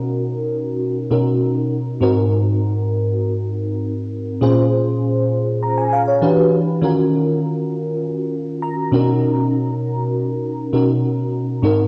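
Urban and slick, this short pop section from a longer piece moves at 100 BPM in a straight 4/4, carried entirely by a bell-like FM electric piano that sits up front with a sparkling, mellow tone, fast attack and a noise layer. Tremolo, ensemble chorus and cassette tape colouring treat the piano as it moves through Bmaj7, Ab7, Bbm7, Em7 and Ebm7 before returning to Bmaj7, with a brief fill at 8.3 seconds. A lush hall reverb surrounds it, giving the home cassette recording a spacious glow.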